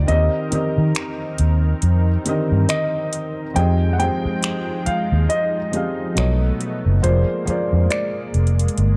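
A slow, swung sixteenth-note groove in 4/4 sets up this dreamy, smooth contemporary R&B excerpt, with a produced drum kit of finger snaps and metallic hi-hats entering at 0.1 seconds. Up front sits a round, foam-muted electric bass, dark and amped, anchoring the low end. A felt-muted upright piano supplies soft, intimate accompaniment, while a mellow baby grand carries the melody, touched by digital delay. Alongside them, a lush unison pad built from detuned sawtooth and square waves holds sustained chords with a slow attack, long release and chorus. The harmony moves from Cm7/Eb to Fm9, then through B9 to Bb9/F, all wrapped in light reverb and a dark, warm production.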